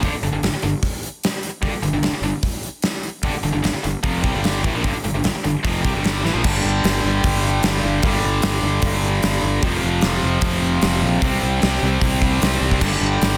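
Aggressive and menacing, this 150 BPM hard rock excerpt drives a tight, double-tracked distorted guitar riff over a growly fuzz bass and a punchy, gated 80s drum kit with bright cymbals in a stone room, shifting to a new section after a drum fill at 6.2 seconds as the power chords move from G5 through F5 and C5 back to G5 under light reverb and a dense, heavily limited modern master.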